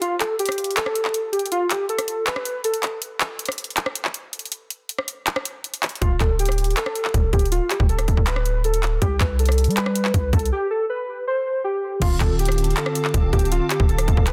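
A half-time trap groove drives this hard-hitting, menacing hip hop fragment, with an up-front electronic kit of hard-clipped kick, bright hi-hats, handclaps, rim clicks, crash cymbal and a softly clipped snare running throughout, while warbly lo-fi synth keys carry a detuned, chorused, tape-echoed melody that drops out briefly before returning. A deep, boomy 808-style bass enters at 6.0 s, and at 12.0 s a clean tine electric piano and a hollow, flute-like pad in the background fill in the harmony. The mix sits in a digital ambience with a dense, heavily limited modern master.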